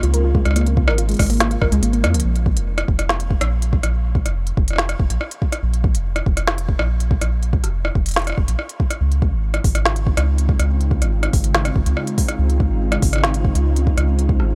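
This intricate, glitchy IDM excerpt at 142 BPM in 4/4 opens on a Dbmaj9 chord. A glassy FM pad holds sustained chords beneath a warbling, lo-fi pluck that plays detuned arpeggios through chorus and tape echo. A round, deep analog bass sits up front throughout, its triangle and sine tone darkened by a filter sweep. An overdriven electronic drum kit with a woody snare, smooth hi-hats and rim clicks pairs with a soft, overdriven kick that enters a moment after the start and drops out briefly before a drum fill at 2.0 seconds. At 2.2 seconds the pad and pluck stop, leaving bass and drums over a Bb5 harmony, until the ethereal pad returns at 9.8 seconds with ensemble chorus and built-in reverb over the returning Dbmaj9. Digital ambience surrounds the mix, and the drums carry the compact grit of a small room.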